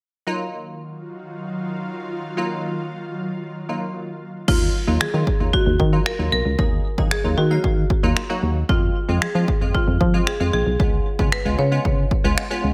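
A straight 4/4 pulse at 114 BPM drives this confident, bittersweet dance-pop passage in Eb minor, cut from a longer piece. It opens with a crisp, detuned wavetable chord stab carrying a filter sweep, soon joined by an ethereal, airy pad with ensemble chorus and built-in reverb, both pumping against the sidechain over Ebmadd9. At 4.5 s a tape-warm electronic house kit with crash, finger snaps and a punchy kick arrives alongside a round, mellow FM bass and a bright hard-mallet marimba melody echoed by digital delay, as the harmony moves to Fm and then Db7 in a light reverb.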